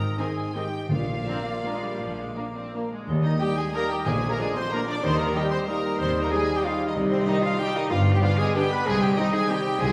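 In a rubato 3/4 sway between 156 and 206 BPM, this festive, sweeping orchestral ballroom waltz excerpt in Eb major has a lush, distant violin section carrying the melody over a second violin line, very quiet flutes, a bright clarinet and a mellow, roomy cor anglais, while a close-miked bassoon and clear violas fill the accompaniment. Bowed cellos and a focused double bass section hold the bass, a ringing, thumb-plucked concert harp spreads arpeggios across its range, and soft-edged French horns and warm trombones sustain chords beneath dark, distant trumpet stabs. Timpani on Bb2 touch in only at 0.9 and 4.1 seconds, and a wet scoring-stage reverb frames the ensemble as the harmony moves from Ab through Bb and Eb toward C minor.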